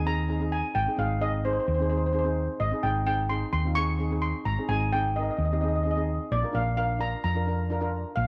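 A bright, shimmering lead steel pan, played with hard rubber sticks and trailed by tape echo, leads this festive, sunny calypso fragment at 129 BPM in Ab major. Beneath it sit a dark, round hollow-body electric bass, fingered and up front, and a band-limited, vintage-toned double seconds pan on medium rubber sticks. The harmony rests on Ab before moving to Bb at 6.3 seconds, all set in an echo-chamber reverb with a small-room ambience.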